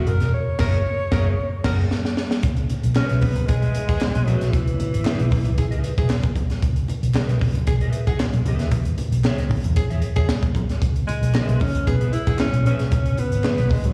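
Funky and driving, this 114 BPM straight-feel funk excerpt in C# dorian opens on an F#9 with a band accent and a drum fill before settling into C#m7, as a breathy, close-miked alto saxophone carries the jazz-style melody with vibrato, stepping away at 6.1 seconds and returning at 11.1 seconds, while a breathy tenor saxophone with scooped notes and soft attack adds a second line, both touched with slapback echo. Underneath, a dark, round, foam-muted fingered bass and a crisp fusion kit with a high-tuned snare and punchy kick sit up front, a mellow, clean electric guitar with analog chorus accompanies quietly, low-tuned congas with a thin-skinned brightness sit in the background, and very quiet saturated group handclaps join from 3.0 seconds. The whole band sounds like a live gig heard through a venue's PA, with small room ambience and recital hall reverb.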